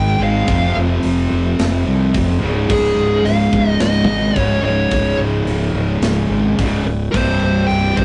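A half-time feel in straight 4/4 drives this short cut from a longer heavy metal piece, which sounds epic and relentless. Up front, a high-gain lead guitar with a dark, distorted tone carries the melody in its upper register, while a fuzz fingered electric bass sits beside it, overdriven and round. Behind them, a distorted electric guitar and a high-gain distorted guitar play bright, picked riffs low in the mix, and a very quiet, compressed, double-tracked fuzz guitar adds its own riff in the same low range. A tight metal drum kit joins at 0.5 s with crash cymbal, hi-hat, kick and a medium-tuned snare, its sound gritty, saturated and mid-forward. The harmony moves through F5, Db5 and C5, and the whole takes on a rough rehearsal-room character with light reverb, saturation and a rolled-off top end.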